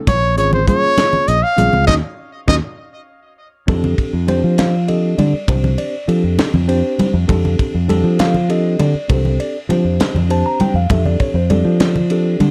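A mellow tine electric piano opens this bright, slick fragment of electric jazz fusion in 6/8, glowing with plate reverb as fingered electric bass, a tight funk drum kit with a high-tuned snare and congas with a thin, damped skin join almost at once. A clear, punchy trumpet states a brief, forceful solo line up front until 2.6 s, while the band hits a shared accent and the drums play a fill leading into a new section at 3.7 s. From there the electric piano, the up-front warm bass, the drums and the congas carry on together in a dark, warm production with light reverb.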